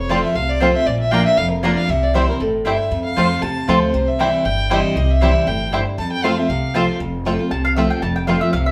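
Bluegrass with a swung, virtuosic and rustic feel, in which a dark, woody bowed fiddle with light vibrato carries the melody up front over a bright picked dreadnought guitar, thumpy pizzicato upright bass on gut strings, twangy fingerpicked banjo arpeggios in the background and round, mellow double-string mandolin stabs, until the fiddle drops out at 6.9 seconds and the mandolin takes a solo from 7.0 seconds, all ringing in a wet, large studio reverb as a band playing live together in a clip cut from a longer piece.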